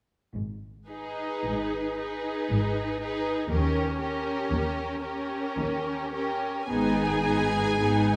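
In a rubato 3/4 at roughly 53-61 BPM, this slow romantic movement for string orchestra in G# minor unfolds with a yearning, solemn mood, moving from G#m to D#7 and back to G#m. Dark, woody double basses, close at hand, and expressive cellos set in the background open the bass at 0.3 s. At 0.9 s the upper strings join: a lush first violin melody with smooth vibrato, a gently vibrating second violin line, and a clear, focused viola accompaniment sitting up front. A moderate concert hall reverb surrounds the ensemble in this fragment cut from a longer piece.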